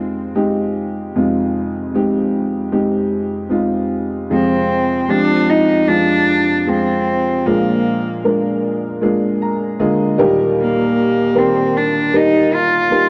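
Heard through worn, warbling cassette tape with a drifting pitch and a lush hall reverb, this heartfelt, hopeful pop piece, cut from a longer work, moves at an even, straight pace in four. A single bowed cello with a nasal, reedy, gut-string tone in a period style carries the melody over a dark, woody, slightly detuned upright piano whose boxy chords hold with long sustain, moving from Fm7 through Bb7 to Eb. The piano adds a short fill from 9.0 to 10.6 seconds.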